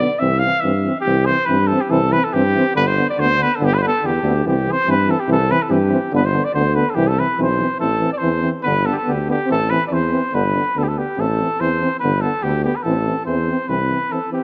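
Heard in a concert hall's moderate reverb with a softened top end, this exuberant, virtuosic Balkan brass band passage in a straight 2/4 opens with a mellow, vintage-toned trumpet solo over the horn and euphonium for the first 1.1 seconds before the trumpet carries the classical-style melody up front, while a close-miked French horn and a euphonium, both with light vibrato, accompany in the background and a warm tuba holds down the bass through chords moving from C and G to A minor, ending on a brief break at 14.1 seconds.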